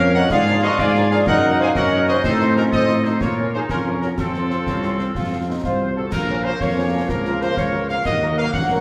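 A dark tuba stands up front in this stern, resolute military-style march for wind band, its smooth-topped bass moving in a straight 6/8. Above it, a mellow, tight trumpet section carries the melody from a distance, while a clear woodwind section with light vibrato and an airy, hollow flute section share a second line. Warm French horns supply the accompaniment and a trombone section holds sustained chords, both set back behind the melody. Concert snare drum, clash cymbals with a dusky edge and concert bass drum join at 0.1 s, sounding close and acoustic against the wet recital-hall reverb of a church or concert hall. A new section begins at 6.1 s, and this short cut from a longer piece ends at 8.8 s.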